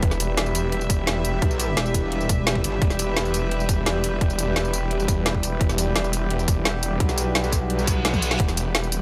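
A straight drum and bass groove runs through this tense, mechanical excerpt of dark technical drum and bass. An overdriven, tight electronic kick and a layered kit of woody snare, bright hats, tambourine and toms sit up front in a small room, over a growling, detuned saw bass and a deep, moody pad with sidechain pumping and sul tasto strings floating high above. A metallic FM wobble bass surges in at 1.4 seconds and again at 7.0 seconds, and a reverse cymbal at 7.8 seconds leads into a closing drum fill.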